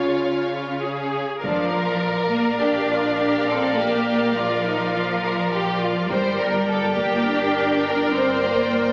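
In a straight 4/4 at 103 BPM, this heroic, relentless slice of epic orchestral film score opens with a lush violin melody with a soft attack over a distant second violin line, focused violas, up-front cellos and mellow, roomy French horns holding sustained chords, moving from C# to Bb at 1.4 seconds and on to G minor at 6.1 seconds. At 1.4 seconds, bowed double basses join the low end, and a taiko ensemble struck with hard sticks booms in the background of a large room in two short bursts. The whole is heard through a moderate scoring-stage reverb but squeezed into a heavily compressed, small-speaker radio sound with a faint mains hum.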